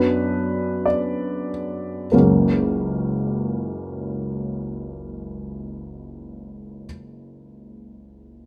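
In a rubato 2/4 at 50 BPM that slows over the first 2.1 seconds before settling from a Bm/F# chord onto F# major, this lyrical, warm romantic character piece for solo upright piano, cut from a longer work, sounds woody, intimate and slightly detuned, placed up front with audible action noise, a natural tone, light reverb, and a span from F#1 to D5.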